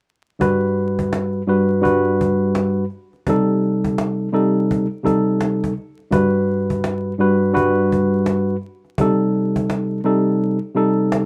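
Boom-bap hip-hop at 84 BPM in G major, swung and nostalgic, this short cut from a longer piece rocks gently between Gmaj7 and Cm6. A worn, slightly out-of-tune tine electric piano sits up front, lightly overdriven through a combo amp and filtered to a cassette-tape haze, while a woody acoustic cajon with faint snares keeps the beat further back. The rough home-demo mix carries vinyl crackle and a small room's ambience, and the kick drops out at 10.4 seconds.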